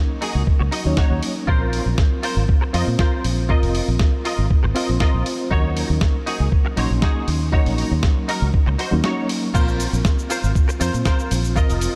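This sensual, groovy nu-disco excerpt opens on a reedy electric piano with fast tremolo, sidechain pumping and tape echo, playing accompaniment in Bb minor at 119 BPM in a straight 4/4. Almost at once a clean, twangy electric guitar recorded direct enters with a picked riff, softened by ensemble chorus, a low-pass filter and tape echo. A dusty soul sampler-style kit of cabasa, crash cymbal, hi-hat and a medium-tuned snare brings gritty, tape-toned texture that sounds re-recorded in a large room. Up front sit a thumpy electronic kick and a round, dark fingered bass that pumps with the sidechain. The harmony moves between Ebm7 and Bbsus2, with a short break from 9.0 to 9.5 seconds, all set in light digital ambience.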